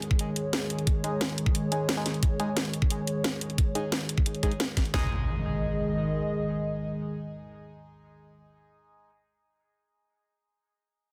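Dark technical drum and bass at 177 BPM, aggressive and futuristic, opens with a deep, detuned analog pad pumping under chorus alongside layered electronic drums with a knocking kick and cracking snare up front, while a nasal, band-passed chord stab with phaser and dub echo enters at 1.0 seconds, the drums drop out around 5.0 seconds, and an electronic impact carries this excerpt on to its end in a dense, heavily limited modern master with light digital reverb.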